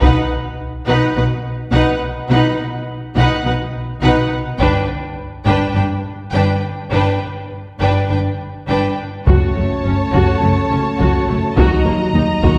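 Taiko drums struck with hard sticks open this heroic, epic orchestral film-score excerpt at 104 BPM in F# dorian, alongside lush bowed strings: focused violins carry the melody over a smooth second violin line, intense clear violas, woody double basses and dark cellos sitting in the background. The strings build steadily over chords moving from B to G, with the taiko returning at 4.6 seconds. At 9.3 seconds the drums enter again as a soft-attacked French horn section adds sustained chords over F#m and D#m, all set in a reverberant concert hall heard from further back in the room.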